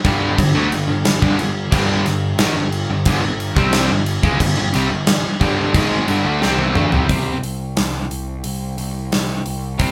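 Heavy and menacing, this hard rock fragment sets three picked guitars on a G5 riff, a bright, scooped, double-tracked distorted electric guitar, a warm overdriven electric guitar and a hollow-body overdriven semi-hollow guitar, all sitting in the background behind an up-front, polished gated 80s drum kit with a tight kick, medium-tuned snare and bright cymbals, plus a punchy fuzz-driven picked electric bass, until a drum fill from 6.4 to 7.1 seconds carries the band to C5, where the distorted guitar drops out, all played live in one room with light reverb.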